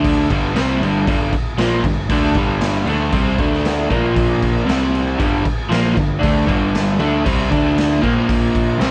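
A straight 4/4 pulse at 116 BPM drives this swaggering, rowdy garage rock excerpt, where a crunchy, double-tracked overdriven guitar riff moves through G5, D5, Bb5 and C5 power chords over a fuzz-soaked, punchy picked bass and a raw, saturated drum kit of crash, snare and kick with sampler grit and a pumping stone-room sound, all captured live in one room onto cassette tape with moderate studio ambience.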